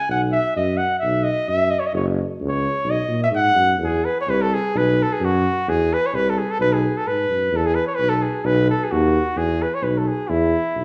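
A clear flugelhorn opens this exuberant, virtuosic Balkan folk passage, cut from a longer piece, singing a classical-style melody up front at 129 BPM in a swung 2/4, with a mellow tuba supplying the bass line with light vibrato. The music starts in B major and moves to E major at 3.8 s, and both horns carry on together to the close at 10.8 s, set in the moderate reverb of a recital hall.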